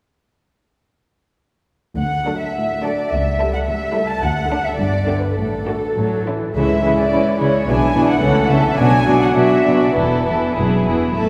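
Bathed in a wet cathedral reverb with a 4.7-second decay, this graceful, spirited classical-period movement for string orchestra in D major moves quickly at 98-110 BPM in 2/4 with a rubato feel. An up-front, vibrato-rich violin section carries the melody from 2.0 s over a dark, smooth-topped second violin line and a soft-attack viola accompaniment entering at 2.3 s, while a cello section in the background and a pure, floating double bass section hold the bass line as the harmony travels from D through C#m and Bm to Esus4 and E.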